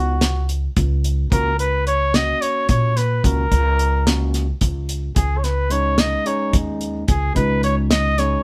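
Bright and intricate, this short cut from a longer progressive instrumental moves in a straight 7/8, with a mellow, classically styled trumpet carrying the melody up front with light vibrato. An overdriven, gritty tine electric piano played through a combo amp supplies accompaniment above a woody, growly pizzicato upright bass, while a cloth-damped, thuddy drum kit with a fat snare, tight kick and rolled-off top joins at 0.2 seconds. The band plays live in one room under light reverb, over chords shifting from a rootless Cb/Db to Gb/Db and then Dbsus2.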